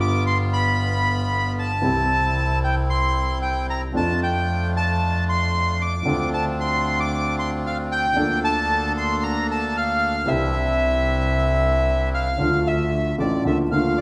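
Set in the lush reverb of a recital hall, this melancholic, tense tango excerpt moves at 114 BPM with a rubato feel. A reedy, dark bandoneon carries the high melody up front, while a second, bright, dry bandoneon plays close-miked stabs until 12.3 seconds. A mellow, woody upright piano supplies the accompaniment, and a single biting, earthy double bass bows the low line with light vibrato. The harmony drifts from G7 through Dm7 and Cadd9 to reach Dm at 12.4 seconds as the music turns into a new section.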